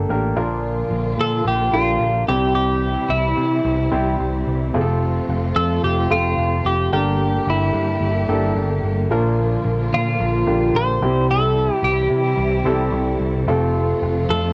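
Hopeful and uplifting, this pop excerpt in C mixolydian moves at 110 BPM in straight 4/4, tuned to A4 = 435 Hz, with chords passing through Bb, C, F and Gm. A clear, polished baby grand piano and a growly, punchy picked electric bass sit up front from the start, a lush bowed string section with vibrato and portamento enters at 0.4 seconds, and a clean, compressed twelve-string electric guitar carries the melody from 1.2 seconds. The piano, strings and guitar bear a cassette-tape coloring, and the home recording is set in light reverb.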